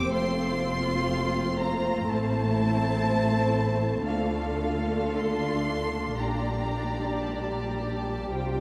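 Tender and flexible in its rubato, this brief excerpt from a slow romantic movement for string orchestra sets a focused, lush violin section on a high melody over a second violin line with a soft attack and smooth top. Woody, close violas give the accompaniment a dark body, while distant cellos sit in the background and a rich, expressive double bass section anchors the low end, every section bowed with vibrato. The orchestra rings in a vast, echoing cathedral space that leaves a long, wet tail.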